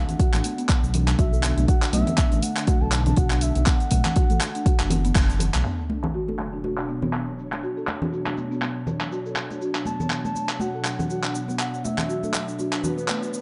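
Earthy and driving, this afro house excerpt moves at 121 BPM in B minor with a 16th-note swing, shifting from Bm7 to Bmadd9 at 5.6 seconds. A deep, tape-warm electronic kick and a layered deep house kit of cabasa, handclaps and hi-hat set the pulse, joined by ringing, high-tuned congas played with soft hands and trailed by dub echo. A dark, detuned saw bass rumbles and pumps beneath until 5.6 seconds, while a woody, buzzing marimba with soft mallets spins filtered arpeggios and an ethereal pad holds chorused, reverberant chords throughout. A mellow bass bansuri carries the melody with vibrato and a breathy chiff, its tape echo lingering before it returns at 9.9 seconds. After a band accent, an electronic sub drop lands at 5.6 seconds and filter sweeps move over the drums and pad, with a closing swell rising near the end in an echo-heavy, softly rounded mix.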